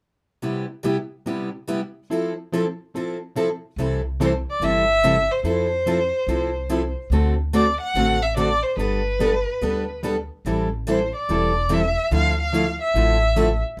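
This short excerpt has the close, lively sound of a string band playing together in a small room, with a moderate ambience around the players. It is charming, playful acoustic string swing in the jazz manouche style, moving at 144 BPM in 4/4 with a swung eighth-note feel in C major. Two picked steel-string acoustic guitars open the piece at 0.4 seconds: the plugged-in one is up front with a parlour tone and fresh strings, while the other rings out brighter with a concert-guitar character, and together they lay down chords through Cmaj7 and Fmaj7. At 3.8 seconds the upright bass joins with a thumpy, woody pizzicato on gut strings, and just after, the bowed violin takes the melody, rich and expressive with vibrato and portamento, heard both up front and with a distant quality. The harmony then winds through C6, Fmaj7, D7, Gadd9 and Am7 before settling on Dmadd9 as the passage is cut off.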